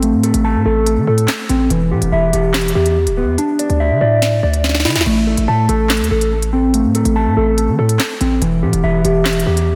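A half-time drill groove in 4/4 drives this ominous hip hop excerpt, carried by an electronic drum kit with a sharp snare, crisp hi-hats, handclaps and a crash cymbal. Beneath it, a hard-hitting 808-style bass sits up front, its sine tone punchy and heavy, with a noise layer, a fast attack and a decaying tail. A mellow, clean electric guitar plays fingered arpeggios throughout, dark in colour and placed forward in the mix, shaded by subtle chorus, a low-pass filter and delay. The harmony moves through Am, Em and Dsus2 before returning to Am and then Em, and the drums break into a short fill between 4.6 and 5.1 seconds. A lush hall reverb soaks the mix, giving the piece a dreamy air.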